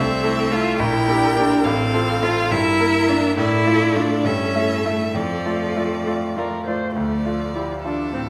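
A brilliant, up-front concert grand piano with deep bass drives this restless, dramatic fragment of a quick classical-period movement for piano quartet in 6/8, its uneven beats pushed and pulled with rubato. Above it a focused, close violin with vibrato carries the melody, while a clear cello sings a bowed second line and a warm, expressive viola adds accompaniment with vibrato and portamento. A wet recital hall reverb surrounds the ensemble as the minor-key harmony darkens through a diminished chord before settling on D minor at 7.0 seconds.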